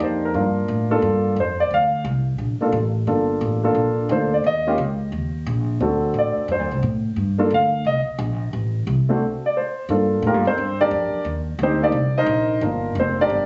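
Jazz in G minor at a brisk 176 BPM with a swung feel, cool and late-night in mood, this brief excerpt pairs a warm, natural grand piano carrying the melody with a woody, thumpy pizzicato upright bass on gut strings, both sitting up front. After a stop from 9.2 to 9.9 seconds, the piano takes a solo turn from 9.9 seconds over minor harmony moving through Gm7, Cm7 and back. The sound is that of a phone capturing the band in a club, with moderate room reverb, compression, a softened top end and plate reverb on the piano.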